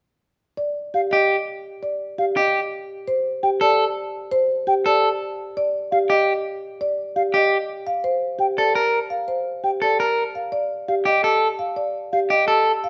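Pulsing in a straight 7/8 at 338 eighth-note beats per minute, this meditative yet urgent excerpt of minimalist classical pattern music sets an up-front marimba with medium mallets carrying the melody against a twangy, slightly broken-up electric guitar and a mellow, hollow concert flute with vibrato, both playing arpeggios, all in a moderate recital hall reverb captured by close, detailed microphones, with the harmony arriving on Gmadd9 at 7.7 seconds and Fadd9/G at 10.2 seconds.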